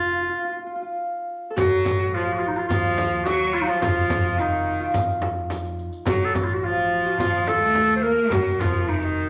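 An Arabic maqam ensemble piece in F maqam hijaz, this melancholic, hypnotic excerpt moves at 107 BPM in a straight 4/4. A distant, roomy clarinet carries the melody up front in a classical solo style, joined from the start by a ringing, fingerpicked Celtic harp and a woody, growly pizzicato upright bass, with a break from 0.4 to 1.6 seconds. At 1.6 seconds a focused, bowed cello with vibrato adds a second line while a crisp, deep metal-shell darbuka and a small bright frame drum sit in the background and a close, dry riq adds bright jingles, all set in a large studio reverb.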